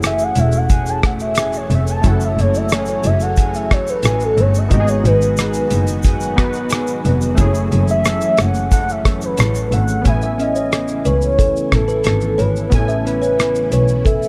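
A straight 4/4 pulse at 90 BPM comes from a damped 70s drum kit, dry and tight in the kick with a rolled-off top, playing hi-hat, rim click and shaker up front, while a grainy egg shaker sits in the background until 10.0 seconds. This is a lonely, wistful piece of indie and bedroom pop in F# dorian, tuned slightly flat, cut from a longer piece and moving from F#m9 through G#m7 and F#m7 before settling on Amaj7 at 10.1 seconds. A bowed double bass carries the low end with vibrato and a focused, smooth tone, joined by a slightly broken-up, fingered electric guitar with subtle chorus and a warbly pitch drift. Round, detuned analog keys with a filter sweep add fast-attack, decaying chords, while a lush, vintage string machine with a sub octave and ensemble chorus holds sustained chords in the background. Above it all a velvety, wave-folded synth lead sings the melody with vibrato, subtle chorus and slapback echo, taking a soft solo through the first 10.1 seconds. 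From 10.2 seconds a woody, mellow kalimba adds a second line with analog chorus and slapback echo, all set in a small room with light reverb.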